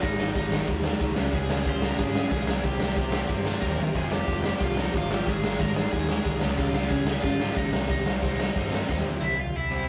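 An urgent, angry punk rock excerpt at 183 BPM in straight 4/4 opens at once with a punchy, gritty garage drum kit up front, a crunchy double-tracked guitar riff, a growly overdriven picked bass and a smooth lead guitar melody, moving through Ab5, Db5, Cm, Fm, Ab, Db and Cm before landing on C, with drum fills at 3.6 and 8.9 seconds, all captured in a rough rehearsal-room sound with light reverb.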